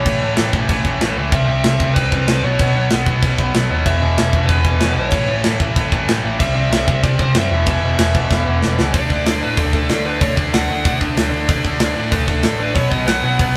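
Rowdy and rebellious, this punk rock excerpt drives forward in a straight 4/4 as a tight metal drum kit, mid-forward and up front with a tight kick and crash, hi-hat and snare, powers a band playing live in one room with light reverb. A bright, double-tracked distorted guitar riff and a growly, overdriven picked electric bass sit beneath a dark, smooth lead guitar melody with overdrive. A drum fill at 8.3 seconds carries the band into a new section at 8.9 seconds, where the harmony shifts to D5 before landing on B5.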